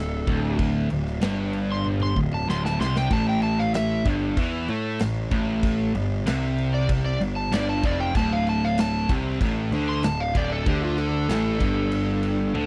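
A gritty, raunchy blues rock and southern rock passage, cut from a longer piece, opens at once with an overdriven slide guitar soloing above a double-tracked, distorted electric guitar riff and a growly, fuzz-laden picked bass, with a big acoustic rock drum kit joining at 0.3 seconds. The tempo is a straight 95 BPM in 4/4, and the harmony moves through D5, A5, F69, back to D5 and on to Gsus2. The slide guitar carries the melody in a high register with a warm, fingered tone and a slapback echo. The riff guitar sits low and up front, warm and distorted, while the bright, direct-and-amped bass growls beneath it. The drums bring a punchy kick, a medium-tuned snare, toms and bright crash cymbals, with a drum fill from 1.9 to 3.1 seconds. The sound is dry and close, like a 1970s studio recording, with only the drum kit carrying a big, natural room feel.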